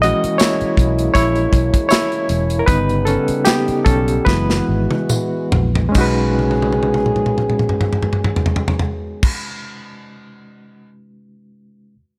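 A barky, lightly overdriven reed electric piano with fast tremolo leads from the start over dark, softly attacked French horn chords, a round, foam-muted fingered bass, a tight funk drum kit with fills and a jingly tambourine in the background, in this smooth, lush 1970s-style soul excerpt in B major at 69-81 BPM with a swung 16th feel. It slows over the first 6.0 seconds, and the drums carry on to 10.9 seconds before the piano rings on alone until 12.0 seconds in a small, lightly reverberant room.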